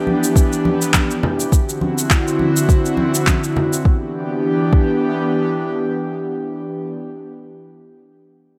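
A lightly swung 4/4 groove of soft, overdriven electronic kick, tape-warm layered cabasa and handclaps, and ringing congas carries this wistful, smooth sunset chillout fragment; the hand percussion drops out near 3.8 seconds and the kick by 4.9 seconds, while an airy, breathy, chorused pad holds mellow Em7 and D9 chords through to 6.9 seconds in a moderate hall reverb.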